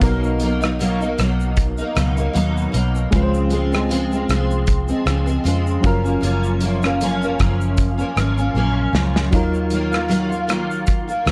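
A dark, softly reverberant small-room mix frames this dreamy, laid-back indie and bedroom pop excerpt at 77 BPM with a gentle 16th-note swing, where an up-front picked steel-string acoustic guitar with fresh strings, ensemble chorus and vibrato plays alongside a reedy electric piano with fast tremolo and cassette-tape color, a round, foam-muted fingered electric bass and a loose, gritty sampled drum kit of hi-hat, kick, rim click, shaker and snare, with a drum fill at 8.6 seconds, all moving through Cbmaj7, Dbmaj7 and Gbmaj7 before settling on Ebmadd9 at 9.3 seconds.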